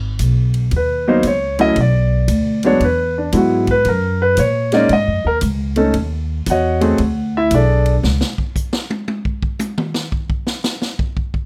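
A woody, thumpy pizzicato upright bass opens this smoky, swinging jazz piano trio excerpt in G# minor at 115 BPM. It is joined almost at once by a big-band drum kit with bright cymbals, a punchy kick and a medium-tuned snare, then by a dark, mellow concert grand carrying the melody up front over chords moving through G#m, Bm, Eadd9, F#6, D#m7 and D, all in light reverb. Once the piano and bass stop, the drums play alone from 8.2 s until the cut at 11.5 s.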